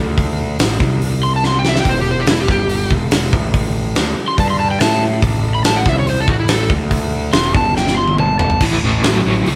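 Driving and swaggering, this blues rock power trio excerpt with a southern rock edge moves at 142 BPM in a straight 4/4, as a growly, fuzzed picked bass and a big, fat-snared drum kit with a tight kick carry a dark overdriven slide guitar solo from 1.2 to 8.6 seconds, punctuated by drum fills, before a crunchy, double-tracked overdriven guitar riff with tremolo takes over at 8.6 seconds, all captured live in one room with moderate studio ambience.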